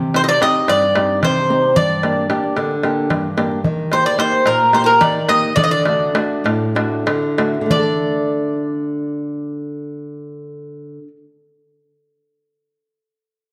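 A bright, metallic Greek bouzouki carries the melody up front, its picked double strings with some octave doubling ringing through a slapback echo, in this cool, bittersweet Greek folk excerpt in 7/8 at 180-224 BPM in D phrygian dominant. A fingerpicked flamenco guitar, warm and up front with audible finger squeak, accompanies through chords moving from Cm to Gm, Eb and D. A crisp, high metal-shell darbuka played with soft hands drops out at 8.0 seconds after the tempo slows between 3.6 and 7.7 seconds, all set in a wet echo chamber reverb.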